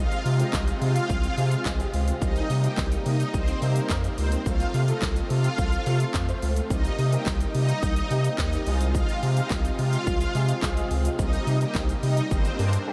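A straight 4/4 pulse at 107 BPM drives this confident dance-pop excerpt, with a pop drum kit built from a punchy kick, fat snare, bright hats, handclaps and shaker, joined by a very quiet, grainy tube shaker from 0.1 seconds. Underneath, a deep, saturated sub bass sits up front and pumps with the sidechain, giving the groove its thick weight. The melody comes from a lush, detuned supersaw pad with a slow attack and long release, treated with ensemble chorus, tape echo and the same pumping motion. In the background, a warm grand piano plays accompaniment through ensemble chorus, while a smooth analog pad holds sustained chords with chorus and sidechain pumping of its own. The harmony circles between Fm/C and Cm7, with F/C in the middle and a turn to Gm near the close, and a huge ambient reverb soaks the mix in a dreamy haze.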